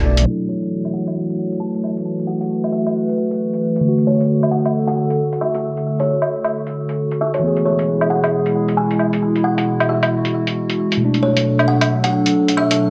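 Future garage with a wistful, melancholic air, this brief excerpt sets a warbly, detuned tape-like pad and a clean, mellow tine electric piano with tape echo under a soft, woody kalimba melody with delay, while muffled, pitched-down hi-hat and woodblock with a filter sweep tick along in a dreamy mix soaked in plate reverb over F#m7, D, E and Bm7.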